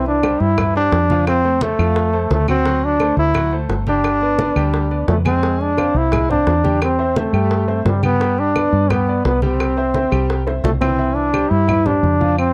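A straight, sunny salsa groove of low-tuned congas, tight high-tuned bongos that drop out at 10.9 seconds and woody claves carries a joyful clip cut from a longer piece, with a punchy, close-miked solo trombone singing the melody up front with vibrato and cassette-tape color over a brilliant grand piano accompanying through plate reverb and tape, while a dark, round, foam-muted fingered electric bass sits up front beneath chords moving from Cadd9 through Fmadd9 and back, and a drum fill at 10.5 seconds turns the passage toward a fresh start on Cadd9 at 11.0 seconds, all in the light reverb of a home cassette recording.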